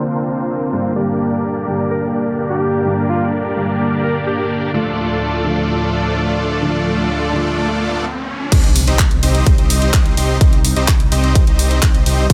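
Euphoric and emotional, this festival progressive house excerpt opens with a mellow felt-muted upright piano, a lush, airy unison pad in the background and a huge, dense compressed supersaw riff under a filter sweep, those three pumping with sidechain, while a breathy alto saxophone with jazz-style scooped notes sings a brief melody from 1.9 seconds and a very quiet riser and impact lead into the drop at 8.5 seconds, where a dark detuned saw bass, a punchy up-front electronic kick drum and a house drum kit of handclaps, hi-hat, ride and crash cymbal join the pad and supersaw.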